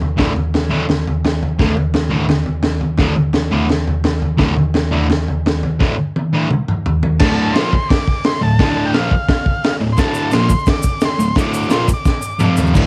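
Raw, dry home-cassette sound frames this swaggering garage rock excerpt in D minor at 171 BPM, where a gritty, punchy breakbeat drum kit with dark cymbals and a high-tuned snare drives under a bright, double-tracked fuzz guitar riff, with fills at 5.8 and 12.1 seconds, a buzzy, heavily vibrato-laden combo organ melody arriving at 7.2 seconds, and a grainy tube shaker tucked in the background from 10.0 seconds.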